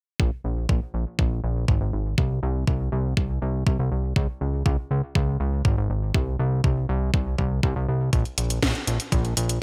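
A fat, detuned sawtooth analog bass with a filter pluck, fast attack, tube saturation and digital delay sits up front from 0.2 seconds in this nostalgic, danceable italo disco excerpt at 121 BPM in straight 4/4, tuned to A4 = 438 Hz, pushed along by a thumpy, tape-warm, sampler-style electronic kick, while a layered house drum kit with hi-hat and an overdriven, cracking snare joins at 8.1 seconds, set in a bright, dry 1980s-style digital production.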